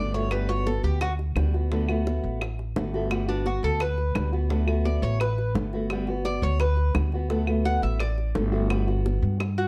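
A dark production with light reverb frames this relaxed, sunny fragment of Cuban son and guajira at 172 BPM in a straight 4/4, moving between Gmaj7 and D6. The up-front Cuban tres takes the solo with metallic, double-strung arpeggios, dropping out at 1.1 seconds and returning at 3.3, over a boxy, fingerpicked old ladder-braced acoustic guitar. Beneath them, a thumpy pizzicato upright bass on gut strings sits up front, joined by round, low-tuned bongos, close and dry, and by woody claves set back in the mix.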